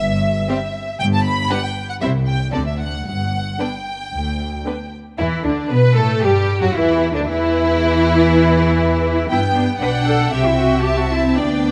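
This quick, graceful excerpt from a classical-period movement for string orchestra opens with a section of violins carrying the melody over cellos and double basses sharing the bass line. Half a second in, a second violin section joins with a clear, smooth counter-line, while violas fill the middle with lush, even accompaniment. The melody violins sound focused and close, the cellos intense with a smooth top, and the double basses sit up front with a rich body. At 5.2 seconds the opening phrase begins again, keeping the cheerful mood going in a straight four-beat metre. Every section is bowed with vibrato, and a moderate concert-hall reverb gives the studio strings a sense of space.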